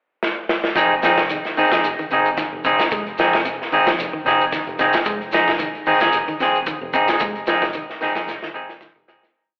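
Afrobeat at 112 BPM in F minor, defiant and hypnotic, as a crunchy, gritty breakbeat kit with a tight kick opens with a fill at 0.2 seconds before the groove settles on a single Fm7 chord at 0.8 seconds. Two slightly broken-up electric guitars with slapback echo carry it: an up-front, twangy part strumming upper chord shapes and a lower, picked ostinato arpeggio, over a round, foam-muted fingered bass riff and a grainy shekere sitting in the background. The whole thing sounds like a live gig heard through the venue's PA with a telephone-thin, club-reverb haze and a lush hall tail, closing on another drum fill as it fades out from 7.2 seconds.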